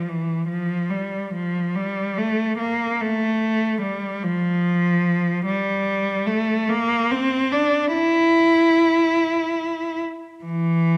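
Yearning and mournful, this classical excerpt for unaccompanied cello unfolds freely in 6/8 at 48 BPM counted in dotted quarters, with expressive rubato and tuning at A4 = 442 Hz. A single bowed cello plays alone throughout the 11 seconds, its rich, smooth tone carrying vibrato as it moves between E3 and E4 with an even, smooth top end. Placed up front, the instrument sits in a moderate recital hall reverberation that lends the solo line a gentle sense of space.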